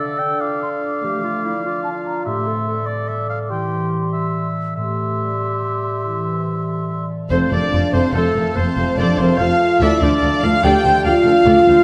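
Opening on a mellow French horn section holding sustained chords under ringing, thumb-plucked concert harp arpeggios, with a hollow, pure flute, a warm oboe and a clear, distant clarinet weaving second lines, this adventurous, soaring cinematic passage in F major at 96 BPM in a straight 12/8 builds until 7.3 seconds, when a rich chamber violin section takes the smooth vibrato melody over lush background violins and violas, a very quiet trombone section, dark trumpet stabs and bowed cello and double bass sections on the bass, all set in a wet scoring-stage reverb.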